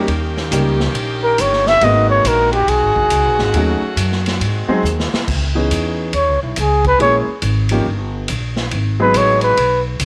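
Swinging in 4/4 at 139 BPM, this dramatic, sultry big band jazz fragment settles into C# minor at 5.3 s, with a punchy, distant drum kit, woody pizzicato upright bass up front and a short-sustained baby grand piano accompanying an edgy saxophone section that holds vibrato chords until 5.3 s, while a dark, breathy, close-miked trumpet carries the intimate melody from 1.2 s amid moderate spring reverb and a drum fill leading into the second section.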